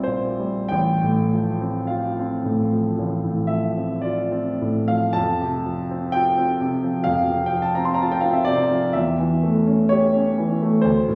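Tender and nostalgic, this short fragment of a romantic classical nocturne unfolds slowly in F major, between 45 and 66 BPM in 4/4 with a freely breathing rubato. A smooth, vintage-toned grand piano sits up front and plays alone throughout, spanning A1 to C6 and moving from C7/Bb to F/A, then settling on F at 5.2 seconds before turning to A7/E at 9.0 seconds. A lush recital-hall reverb with a 1.5-second tail wraps the playing in the resonance of a church or concert hall.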